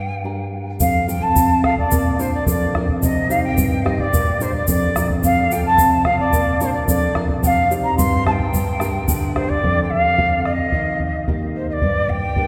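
A straight duple pulse drives this earthy, melancholic Andean folk piece, cut from a longer work, with a round, close bombo and a grainy, bright egg shaker entering at 0.8 s; the shaker drops out at 9.2 s. Up front, an airy cane quena carries the expressive melody with soft attacks and vibrato, while a full-bodied, fingerpicked nylon-string guitar, finger squeaks audible, fills out the accompaniment. The ensemble sits in a church or concert hall, bathed in a long, wet cathedral reverb that casts a melancholic glow over the minor-leaning harmony.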